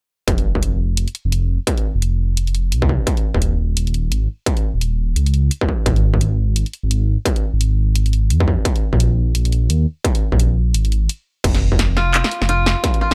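A dry, gritty hardware recording with a digital ambience carries this dark, spacious half-time drum and bass excerpt in F minor at 172 BPM, swung on the sixteenths. An up-front, overdriven electronic kick and a layered kit of cracking snare, hi-hat, handclaps and crash cymbal drive over a deep, rumbling detuned saw bass whose beating tone moves through F5, Eb7(no3), Fm/Ab and Absus2. After a brief break at 11.1 seconds, a woody koto played with fingerpicks enters at 12.0 seconds with tape-echoed arpeggios on F4.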